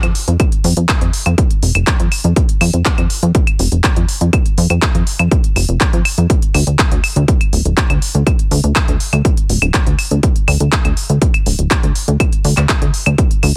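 The recording sounds dry and close, with little reverb, its parts placed up front in a short cut from a longer melodic techno piece. At 122 BPM in a straight 4/4, the mood is melancholic and hypnotic. A plucky analog bass runs from the start to 13.5 seconds between D1 and F2, punchy and funky, its sawtooth, square and sine tones shaped by ring modulation and wave-folding into a fast-attack, decaying filter pluck that pumps against the sidechain. A techno drum kit of claves, handclaps and smooth hi-hats plays throughout, layered and tape-warm, re-recorded in a small room. An electronic kick drum enters at 0.4 seconds, heavy and layered, carrying that same small-room re-recorded texture until 13.3 seconds.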